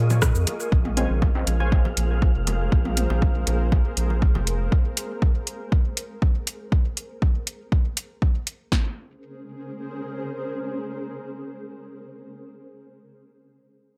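A cloudy, blurred granular pad on a Bbm9 chord opens this deep, cavernous dub techno excerpt at 120 BPM in Bb minor, joined by a muted, nasal chord stab that gets a filter sweep from 0.7 to 2.7 seconds, a round, up-front analog bass with tube saturation, an airy wind-like noise texture, overdriven deep house drums with a punchy snare, deep kick and metallic hats, background electronic bongos and toms with dub echo, and a brief warbling lo-fi synth keys riff at 1.0 seconds. The pad, bass, texture, bongos and toms, and keys pump under sidechain in a digital ambience until the pad sustains alone to 11.9 seconds.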